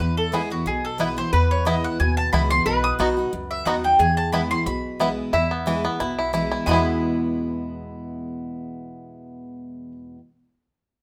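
A joyful, rustic bluegrass snippet with a swinging feel, where a woody, double-strung mandolin carries the melody up front over a nasal, metallic lap resonator guitar playing a second line with a slide, a bright, full-bodied jumbo acoustic guitar picking the accompaniment, a twangy, percussive banjo playing arpeggios from 0.3 seconds, and a dark, thumpy pizzicato upright bass, all set in light reverb.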